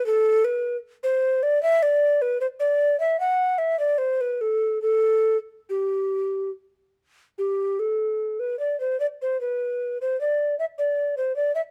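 Closely miked with light reverb and an up-front, detailed presence, this radiant, serene fragment of a baroque-style fantasia in 3/4 features a solo tenor recorder that plays unaccompanied from 0.0 to 11.6 seconds with a rubato feel, its hollow, airy, wooden tone marked by tongued attacks, chiff and vibrato as the opening section returns at 7.4 seconds.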